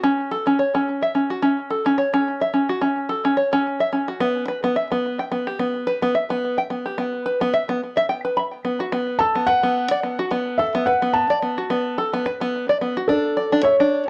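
An open-back banjo, plunky and twangy with a delay trail, picks out arpeggios up front in this delicate folktronica excerpt with a gentle 16th-note swing, joined at 9.2 seconds by a felt-muted upright piano whose soft, intimate melody also carries delay, all set in a dark production with moderate studio reverb as the harmony moves from Em to B7 and Dsus2.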